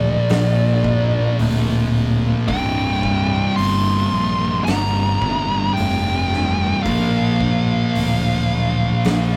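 A dark, compressed fuzz lead guitar carries the melody up front in this brief, ominous stretch of stoner and doom metal, crawling at 55 BPM in 4/4 over a Bb to C5 and back to Bb progression. Beneath it, two thick fuzz guitars pick a low riff, one dark and prominent and the other warmer and set in the background, while a growly overdriven fingered bass holds down the low end. An oversized, low-tuned drum kit enters at 0.3 seconds with a boomy kick, fat snare and hi-hat, its gritty, saturated sound pumping in a bright stone room that gives the rough rehearsal-room recording its brooding weight.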